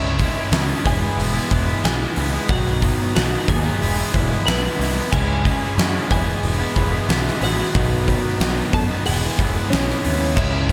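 A clean, twangy twelve-string electric guitar carries the melody with spring reverb and slapback echo, over two picked, distorted electric guitar riffs (one tucked in the background with its own slapback) and an overdriven fuzz bass. A huge arena drum kit enters at 0.2 s, up front with a fat snare and punchy kick. This anthemic, restless alternative rock excerpt in E major moves at 92 BPM through a C#m, E, B, E progression, filling a big concert-hall space.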